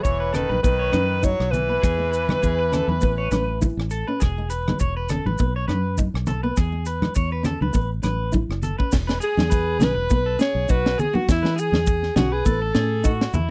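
A breathy, whispered alto saxophone carries the melody over a brilliant, punchy trombone second line as this joyful, danceable highlife guitar band piece opens, with congas joining at 0.3 seconds. The tempo sits at 102 BPM in 4/4 with a light swing on the sixteenths, in E major, cycling through E, B and Aadd9. A twangy electric guitar at the edge of break-up plays picked arpeggios with a slapback echo, while a dark, fingerpicked nylon-string guitar sits in the background as accompaniment. Up front, a round, foam-muted fingered bass and a tight funk drum kit with a high-tuned snare, crash, hi-hat and rim click drive the groove, joined by hard-handed, damped congas and grainy maracas. The trombone drops out at 3.9 seconds, and the saxophone, with its soft attack and jazz-style vibrato, returns at 9.2 seconds for the second section. The recording is dry and close, with a 1970s studio character, and it is cut from a longer piece.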